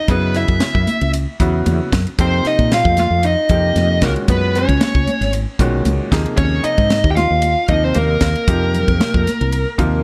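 Funky and driving, this short electric jazz fusion excerpt moves with a light sixteenth-note swing over suspended ninth chords. A dark, smooth lead guitar with overdrive and slapback echo carries the melody up front, joined by a clean, compressed hollow-body jazz guitar on a second line, while a brilliant concert grand piano supplies accompaniment. Underneath, a growly, woody fretless bass sits forward beside a tight, dry funk kit with a high-tuned snare and bright cymbals, and thin-skinned congas add percussion in the background of a dark, small-room production.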